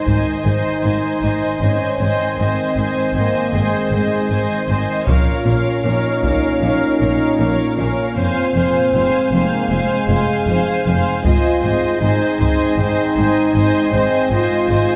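A wet scoring-stage reverb places this heroic, adventurous orchestral film cue further back in the hall, moving at a steady 78 BPM in Ab major through a passage cut from a longer piece. Clear, intense violins carry the melody over a second line from softer-attacked violins, while close, even violas accompany and dark, distant French horns hold chords beside background trombones; rich cellos with portamento and double basses anchor the bass. Close, dry taiko hits struck with hard sticks punctuate the passage at 0.1, 5.1 and 11.2 seconds.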